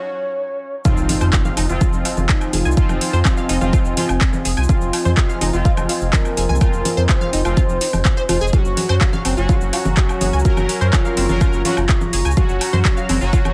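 Cinematic and melancholic, this melodic techno passage moves at 125 BPM in a straight 4/4, set in F phrygian and cut from a longer piece. A soft, octave-layered synth lead opens alone, its round triangle tone carrying a dark vibrato melody through chorus and dub echo, before the drop lands at 0.9 seconds with a background impact. From there an overdriven electronic kick sits up front beside a deep house kit of congas, handclaps, metallic hi-hats, shaker and woodblock, both re-recorded in a large room. A round analog bass, mellow with a ring-modulated edge, pumps under sidechain with a high-pass filter. Tight detuned arpeggios driven by a filter pluck and phaser, bold wave-folded brass stabs with a filter sweep, and a moody slow-attack pad in the background fill out the harmony over Fm7, shifting to Gb at 8.5 seconds, all within a digital ambience.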